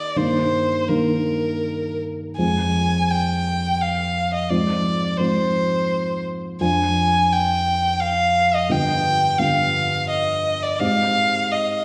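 A bowed violin and a grand piano begin together in this romantic classical duo, a yearning, solemn passage in 3/4 at about 85 BPM that moves with a loose, rubato sway. The violin carries the melody with a warm, smooth vibrato, while the dark, mellow piano accompanies from its lower register, its vintage tone and audible action noise lending an intimate quality as the harmony passes from Eb/G through Fm and Ddim/F to G7 before settling on Abmaj7 at 10.8 seconds. A lush recital-hall reverb places the listener further back in the room, and the passage is cut from a longer piece, breaking off at 11.8 seconds.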